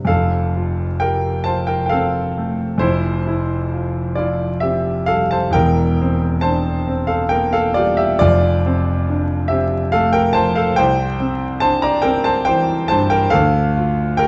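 A romantic classical nocturne for solo piano in 3/4, with a tender, nostalgic mood and a flexible rubato feel. A concert grand sits up front with a deep, smooth bass and a vintage character, playing alone across the full 14.3 seconds, from its lowest register up into the upper middle. A wet recital-hall reverb surrounds it, while vinyl crackle and a dulled top end give the sound an aged, faded quality, as if lifted from a longer piece.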